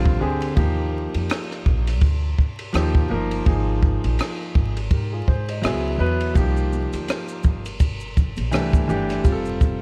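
Mellow and nocturnal, this short jazz-hop cut at 83 BPM in C minor swings lazily over a dark, smooth grand piano up front with long sustain, a woody, thumpy pizzicato upright bass on gut strings, a compact cocktail kit of punchy kick, hi-hat, ride and rim click roughened by vintage 12-bit sampler grit, and soft-handed maracas and congas slipping into the background at 6.4 seconds, all wrapped in small-room reverb and vinyl crackle as the chords drift from Bb7 through Ebmaj9 and Cm11 to Fadd9.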